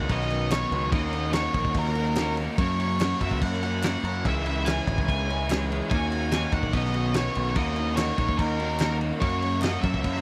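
A growling, overdriven picked electric bass sits up front and drives this cool, bittersweet indie rock passage, cut from a longer piece and played with a straight feel in 4/4. Above it, a dark, fuzzy octave-fuzz lead guitar carries the melody, while a crunchy overdriven guitar with lush chorus and a bright, twangy, compressed twelve-string electric guitar play riffs in the background. A loose acoustic drum kit adds a fat snare, punchy kick and crash cymbal with a gritty, saturated tone and a rolled-off top, and crisp group handclaps come in at 0.5 seconds and drop out at 9.7 seconds. From 0.4 seconds, a very quiet shimmering ambient pad holds ethereal, detuned chords with octave-up shimmer, phaser and built-in reverb. The harmony cycles through Badd9, D#m7, F# and C#m, and the whole is captured as a dry, close 1970s-style studio recording.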